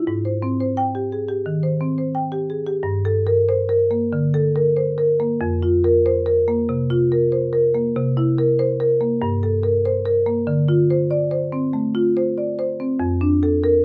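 A solo marimba played with medium mallets carries this flowing, hypnotic contemporary classical passage. Its padauk bars give a woody, mid-forward tone, placed up front in light reverb. At 94 BPM in 4/4 with a rubato feel, the music is in G dorian and spans F2 to G5. It opens on Abmaj7, then moves through Gmadd9 at 2.8 seconds, Fsus4, C7, a return to Gmadd9, Dm7 and F6 before this cut from a longer piece closes at 13.8 seconds.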